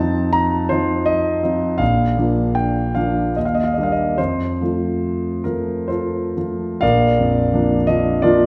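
A dark concert grand piano sits up front in a wet recital hall, its mellow, intimate tone carrying audible action noise and deep bass, with a long reverb tail of about 1.7 seconds. This is a short passage cut from a longer romantic character piece for solo piano, passionate in mood and in Bb major, tuned to A4 = 443 Hz. The music moves in 3/4 with a rubato feel, its tempo flexing between 58 and 87 BPM. The harmony opens on F7, settles onto Bb, and passes through Ebmaj7 and F before a new section begins at 6.8 seconds on Bb. The piano spans from Bb1 to Bb5, and its smooth, vintage character gives the playing a warm quality.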